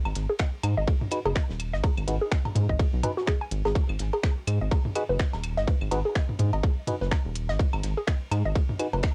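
A rubbery, bouncy square bass with sidechain pumping opens this cool, clinical minimal techno excerpt at 125 BPM in G# minor, arriving with overdriven electronic cowbell, claves and toms through analog delay, then a clicky minimal kit of finger snaps and hi-hat, a dark soul kit of ride and fat snare in the background, a hollow, detuned square pluck riff with chorus, and a tight, up-front electronic kick by 0.4 seconds. At 1.1 seconds a nasal, percussive organ stab joins over a single G#m7 chord, its dark tone drifting through a moving notch and analog chorus. The 16th-note swing keeps the groove loose, while the dry, cassette-recorded sound gives the mix a lo-fi, homemade grain.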